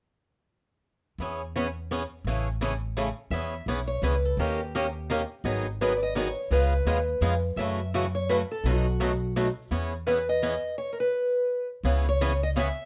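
Acoustic string swing in the jazz manouche style, this charming fragment from a longer piece moves at 169 BPM in a lilting 3/4 with swung eighths, set in E major. A picked swing-style acoustic guitar and a pizzicato upright bass start together at 1.2 seconds, the guitar boxy and warm with audible finger squeak, the bass woody, growly and thumpy on steel strings, both sitting up front. At 3.3 seconds a picked archtop guitar takes the melody, its dark tone and fresh strings given a touch of plate reverb, with finger squeak of its own. The harmony circles from E6 and Amaj7 through D#7, G#m7, C#7, F#m7 and B7 before returning to E6 and closing on C#m7. A light reverb gives the trio a modest room, and the whole fragment swings along in just under thirteen seconds.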